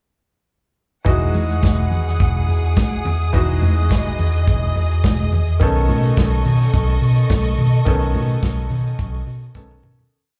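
Heard through a venue's PA with a touch of club reverb, this joyful, danceable disco piece moves at 106 BPM in E major with a swung sixteenth feel, shifting from Emaj9 to B9 at 5.6 seconds. Up front, a warm soul drum kit drives a four-on-the-floor beat with open hats on the off-beats and a tight kick, while a dark, round hollow-body bass plays octave disco lines with slides. A clear, worn grand piano with slapback echo holds drop-voiced chords, and a bright, lush string section sustains a vibrato-rich pad. In the background, ringing congas carry a syncopated groove and a jingly tambourine marks the backbeat, before the music fades out from 7.9 seconds and closes on a drum fill at 9.6 seconds.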